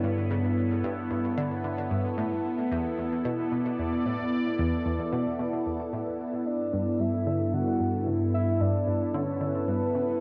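A swirling, up-front analog pad, detuned and bright with phaser and chorus, carries this luminous, cosmic piece of sequencer-driven space music from the opening, holding sustained chords that move from G through E5 to Gmaj7. Beneath it, a round, nasal analog pluck plays a low riff with a fast attack and short decay, its sawtooth tone edged with a noise layer and passed through chorus, phaser and delay. At 6.5 seconds a soft, octave-layered synth lead enters with a melody, full and dark with a sub octave, vibrato and a cassette-tape tint over its chorus and delay. The pulse is a steady, straight 4/4, and a wet spring reverb with digital ambience surrounds the parts in a home cassette recording. The passage is cut from a longer piece and ends at 10.2 seconds.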